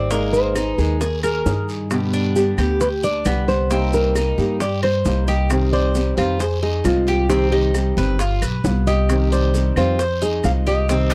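Cuban son with a guajira lilt, this danceable C minor passage, cut from a longer piece, moves at 134 BPM in a straight 4/4. A classical nylon-string guitar carries the thumb-plucked melody with audible finger squeak. Beneath it, a dark, boxy parlour steel-string guitar fingerpicks the accompaniment, and a metallic Cuban tres, its double strings partly octave-doubled, spins mellow arpeggios. Up front, a thumpy pizzicato upright bass with steel strings anchors the low end. From 0.1 s a background percussion bed joins: tight, high-tuned bongos, a raspy guiro set distant in a large room, grainy, saturated maracas, and woody claves entering at 0.6 s. The harmony opens on Absus2, G and Cm7, then from 5.5 s cycles through Cm, Fm7 and G7, all captured in a dry, close 1970s-style studio sound with little reverb that frames the warm mood.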